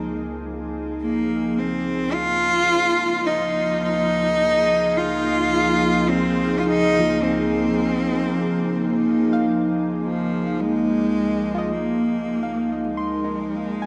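A cavernous cathedral reverb with a long tail surrounds this short, weightless ambient piece, cut from a longer work. It moves at a slow 53 BPM in 4/4 with a straight feel, resting in Db major on a single Dbmaj13 chord. A glassy FM pad holds sustained chords from the start, its slow attack and long release colored by ensemble chorus, while a soft, round pluck traces arpeggios alongside it, dark and decaying, with chorus, shimmer reverb and delay. At 1.0 seconds a single close, focused cello enters up front with a rich, bowed melody and vibrato, trailed by shimmer reverb and delay. The mood stays peaceful throughout, and a fade-out begins at 7.6 seconds and carries the piece to its end at 13.9 seconds.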